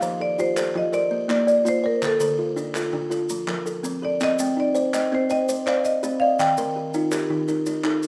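Lightly reverberant, this rippling southern African traditional piece in F mixolydian moves at 110 BPM in a straight 12/8 mbira-style interlocking cycle, with a full, dry marimba carrying the melody up front, a woody, airy kalimba and a bright, buzzing kalimba ringing out arpeggios, and crisp group handclaps and grainy maracas adding percussion over chords that pass from F through Bb, Dm, Cm and Eb.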